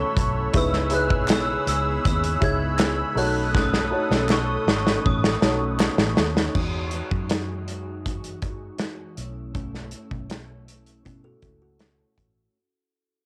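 A loose, straight 4/4 indie drum kit with a punchy kick and pumping small-room sound sits up front, joined by a round, foam-muted electric bass with transformer saturation and very quiet, crisp group handclaps, carrying this hazy, laid-back bedroom pop clip cut from a longer piece. Over a light reverb and cassette-tape haze, a bright, sparkling glockenspiel melody with ensemble chorus and tape echo rides above a dark, woody, slightly detuned upright piano, a mellow clean electric guitar with analog chorus and warbly pitch drift, and a smooth sawtooth pad. A drum fill from 3.5 seconds leads into the second section, where the piano, glockenspiel and pad drop away as the track fades out from 6.5 seconds, and a faint hollow kalimba enters at 11.1 seconds.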